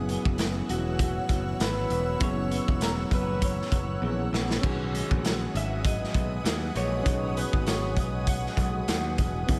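A dreamy mix soaked in cathedral reverb opens this sunny, hazy indie-pop and bedroom-pop excerpt at 99 BPM in B major, where a gritty, saturated garage drum kit sits up front with a fill at 4.0 seconds under a growly, punchy picked electric bass, a twangy background guitar with analog chorus and warbly pitch drift, a reedy electric piano with cassette character, and an ethereal, detuned airy pad holding sustained chords, while a slightly broken-up, compressed lead guitar with subtle chorus and analog delay carries the melody from 0.7 seconds as the harmony moves from F#7sus4 to B6.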